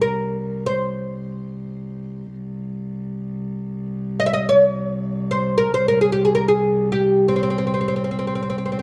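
Unfolding in free time, this short excerpt from an Arabic maqam piece in saba on C has a festive, warm mood. A bright, woody oud carries the melody up front, its plucked double strings ringing through plate reverb from C4 to E5 across the full 8.8 seconds. Beneath it, a single bowed cello holds a soft-edged drone on C2 with light vibrato and a smooth, intimate tone, all set in a moderate studio room with a dark production.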